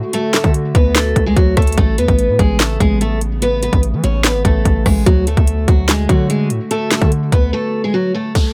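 Trap-flavored hip hop at 146 BPM in a half-time feel, this wistful, dreamy excerpt cut from a longer piece drifts over chords moving from D to Aadd9 and back to D. A picked steel-string acoustic guitar carries the melody up front, its full-bodied tone softened by a low-pass filter. Beneath it, a warbling, nostalgic tape-like pad holds sustained chords in the background, lo-fi and detuned, colored by chorus, phaser, built-in reverb and a low-pass filter. A hard-hitting 808-style bass, punchy and saturated with a fast attack and decaying tail, drops out at 7.5 seconds for a brief break. The electronic trap kit sits up front with a hard-clipped kick, sharp snare, handclaps, rim clicks and metallic hats, and a short downlifter closes things at 8.4 seconds in a dry, close-sounding mix.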